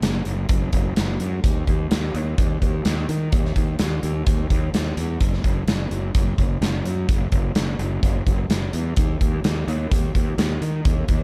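A dark, dry production puts a fuzz-drenched fingered electric bass and a big acoustic rock drum kit up front in this 11.2-second cut from a longer shoegaze and dream pop track, moving at 128 BPM in a straight 4/4. The overdriven bass growls with a bright, direct-amped edge across a low range. The drums bring a punchy kick, a medium-tuned snare and hi-hat with a big-room presence, and both parts play throughout, giving a dreamy, wistful mood a heavy, grounded weight.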